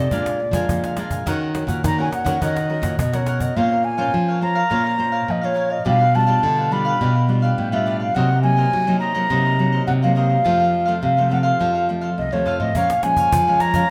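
Recorded live in one room with moderate large-studio reverb, this nostalgic, bittersweet samba and choro piece at 104 BPM in straight 4/4 shifts from Eb minor to Bb minor at 3.6 s, with an airy, wooden mellow baroque flute carrying the tongued, straight-toned melody up front with rolled-off highs over crisp picked cavaquinho, a dark fingerpicked classical nylon-string guitar also up front, and a full-bodied, deep nylon-string guitar bass with audible finger squeak, while a snappy cajon with snares, close and dry under soft hands, drops out at 3.5 s and returns at 12.8 s.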